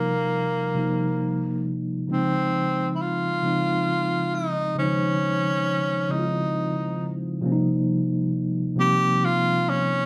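A breathy tenor saxophone and a mellow tine electric piano begin together, setting up a sensual, intimate R&B mood in a slow 6/8 at 45 BPM, counted in dotted quarters with a straight feel. The saxophone carries the melody up front in a whispered, pop-style solo, its soft attack and light vibrato staying clear within a modest range from Bb3 to G4. The electric piano sits equally forward, its clean, mellow tone heard through its built-in speakers as it accompanies across a range from C3 to C5. The harmony in Eb mixolydian rests on Eb69, moves to Dbmaj9 at 2.1 seconds, and returns to Eb69 at 7.4 seconds, where a new section begins. Played live in one large studio room with moderate reverb and tuned slightly low to A4 = 438 Hz, this warm fragment is cut from a longer piece.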